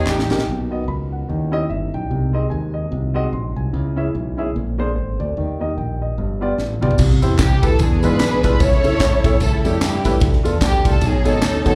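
Heard through a club's PA with a light wash of room reverb, this solemn, soulful uptempo gospel excerpt swings over a bright, punchy fingered electric bass and a warm baby grand piano with slapback echo, both running throughout. Distant, roomy French horns hold dark sustained chords in the background until 7.0 s. A crisp fusion drum kit with a high-tuned snare fills in at 6.6 s, backed by handclaps and tambourine, and a lush, bowed string section carries the melody with expressive vibrato from 7.4 s.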